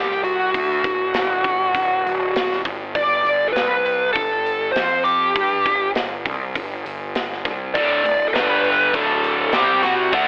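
Swaggering and confident, this classic rock passage in D major at 100 BPM, cut from a longer piece, puts a dark, compressed fuzz lead guitar with wah and distortion up front on the melody over a round, overdriven picked electric bass and a big studio rock kit with boomy kick, hi-hat and medium-tuned snare, before a bright, double-tracked crunchy guitar riff enters at 7.8 seconds, all heard through light reverb and a telephone-like filter over chords moving from C5 and D through G5, Gsus2, F5 and Gsus4.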